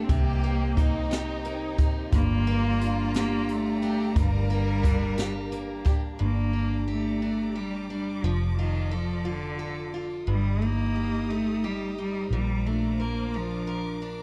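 A rich cello with vibrato carries the aching melody of this dramatic six-eight pop ballad, set over a warm picked steel-string acoustic guitar, a round, foam-muted fingered electric bass and lush sustained chords from a studio string section with portamento, while a symphonic violin section's expressive second line and a brushed jazz drum kit with a boomy kick and high-tuned snare both stop at 6.0 seconds, in a dark production with little reverb.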